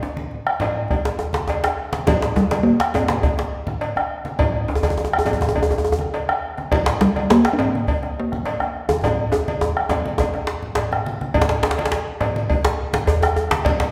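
A lush recital-hall reverb surrounds this short cut from a longer West African drum ensemble piece, giving it a churchy, resonant ambience. The groove is earthy and driving in a straight 4/4 at 103 BPM. A deep djembe with metal rattles and soft hands sits in the background, joined almost at once by bright, damped, low-tuned congas with a thin-skinned, saturated bite, a round, compressed bombo further back, and a metallic, band-limited cowbell with a vintage tone. A tight, cracking second djembe, also rattling, comes up front. A close, dry talking drum carries the melody between 2.1 and 8.8 seconds before a drum fill arrives at 9.0 seconds and the piece moves into a new section.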